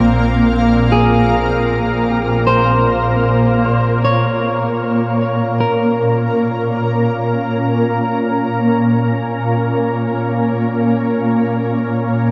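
Drenched in a huge, dark reverb, this melancholic, spacious ambient excerpt in free time and Bb minor rests on an up-front shimmering pad of detuned, granular sustained chords throughout, while a bright, bowed double bass section holds Bb1 with vibrato until 3.6 s and a slightly broken-up electric guitar plays fingered arpeggios through tape echo and shimmer reverb from 0.9 to 6.8 s, as the harmony moves from Fm/Bb to Bbm.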